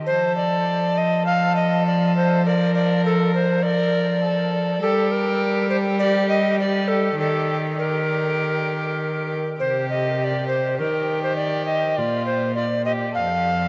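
Classical music in a Renaissance-style consort dance, this short excerpt cut from a longer piece has a festive, courtly air in a straight, steady four. A tenor recorder carries the melody up front, its airy, wooden tone marked by a crisp, chiffy attack, lifted highs and a touch of vibrato. Beneath it, a single violin plays a second line with a dark, nasal, reedy gut-string sound that sits distant in the blend. A lone cello anchors the bass close and forward, its period-style gut strings giving a warm, reedy body. All three play from 0.1 to 13.7 seconds, with the harmony moving through F, G minor and E-flat before a contrasting second passage from 9.6 seconds that returns home to F. Heavy reverb places the consort in a vast, echoing hall, with a tail that lingers long after each phrase.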